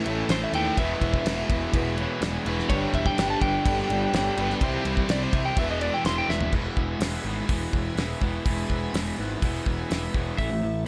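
Classic rock at 125 BPM in 4/4, sunny and confident, cut from a longer piece, with a dark, compressed slide guitar playing fingerpicked solo lines from 0.3 s until 6.5 s, then returning briefly at 10.4 s, over a chord run of A, E, G, C and E. Three background electric guitars play riffs: one biting and double-tracked, one bright and distorted, one dark and overdriven. A fuzzy, punchy bass and a dry, up-front drum kit with a fat snare and tight kick sit underneath, and the drums fill at 6.3 s. A woody, slightly detuned upright piano with audible action noise comps until 6.5 s, while a very quiet tonewheel organ holds shouting chords through a slow rotary speaker, all in light reverb.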